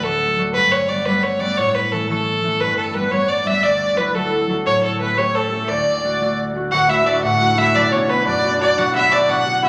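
Rollicking and lively, this Celtic folk jig in D major moves at 117 beats per minute in a straight 6/8, cut from a longer piece. A single clear fiddle carries the melody up front, bowed with light vibrato and a biting, intense edge, though it sits somewhat distant in the space. Beneath it, a concert harp provides fingerpicked, ringing accompaniment across a deep range, while a reedy musette accordion with shimmering musette tuning joins on a dark, smooth second line at 2.6 seconds. At 6.7 seconds a new section begins and a hammered dulcimer adds another shimmering second line in its middle register. The harmony moves through D, Gadd9, A, G, Dadd9, A7 and D before turning to Bm and G/B, all set in a wet, large studio reverb.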